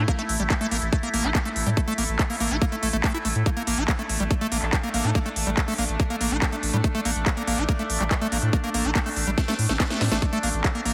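A nasal sawtooth drone with moving overtones and chorus, sustaining chords under sidechain pumping, opens this driving psychedelic trance excerpt alongside a squelchy, resonant acid bass riff with filter sweeps and digital delay and a round, deep, dark analog bass, joined at 0.1 s by a tight, overdriven, up-front kick and a layered techno kit of cracking snare, handclaps and smooth hi-hats, with a drum fill from 9.4 to 10.2 s, the whole mix heavily compressed into a radio-like sound in a lush hall reverb.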